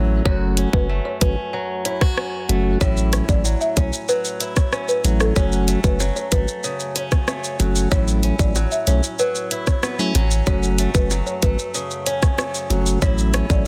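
A punchy, deep sub bass with a pitch-drop attack sits up front in this hypnotic, tough dancehall excerpt at 94 BPM in F# minor, alongside a tight electronic drum kit with dark hats and soft clipping on the snare, a mellow, flute-like tonewheel organ on slow rotary speaker, a boxy fingerpicked swing-style acoustic guitar playing arpeggios, a woody folk marimba melody through digital delay, and round, low-tuned bongos entering in the background at 6.0 seconds, all over an F#m to A6 progression in a dense, heavily limited mix with small room ambience.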